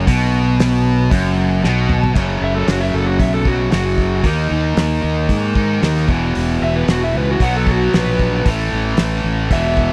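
A straight 4/4 groove at 114 BPM drives this sunny, confident classic rock excerpt, where a cloth-damped, thuddy drum kit with a fat snare and dark cymbals sits under a punchy, fuzz-soaked fingered bass and two bright, overdriven electric guitars playing a picked riff over a rootless Esus2. After a drum fill from 1.6 to 2.2 seconds, an overdriven slide guitar takes a warm solo from 2.4 seconds, ranging up to F#5 over chords moving through F#5, D#5, E5, B5 and A5. The sound is dry and close in the manner of a 1970s studio, with the drums gritty and rolled-off on top.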